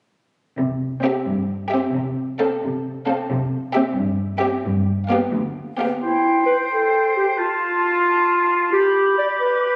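Magical and quirky, this playful, whimsical film cue moves in a straight 6/8 at 88 BPM in C major, and it is cut from a longer piece. A lush symphonic cello section enters at 0.6 s with a rich, smooth bass line, soon joined by chamber strings: a soft, sul tasto violin section carries the melody from the background with light vibrato, while a second violin section sits up front with an even second line and a distant viola section fills in the accompaniment. The harmony steps from C through F/C and back before landing on G7. At 6.0 s the strings give way to woodwinds, as a clear oboe with light vibrato, an airy, hollow flute section with straight tone and lifted highs, and a mellow clarinet each carry second lines over C/E, F and G. The whole cue sits in the wet bloom of a scoring stage, captured on a phone in the room with a club-like reverb around it.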